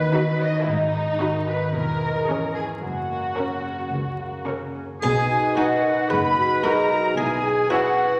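Ringing harp arpeggios and a lush, distant violin section sliding with portamento open this playful, whimsical film cue at 112 BPM in B major, together with a dark cello section and a double bass section in the background, joined at once by a smooth viola accompaniment and a very quiet, focused violin melody. At 5.0 seconds the cue turns to a new section, bringing in a muted, lute-like harpsichord, a bright solo oboe, an airy metal flute and a horn section holding sustained chords, with a brief touch of triangle. A wet scoring-stage reverb and a layer of vinyl crackle lend the mischievous cue, cut from a longer piece, a cinematic glow.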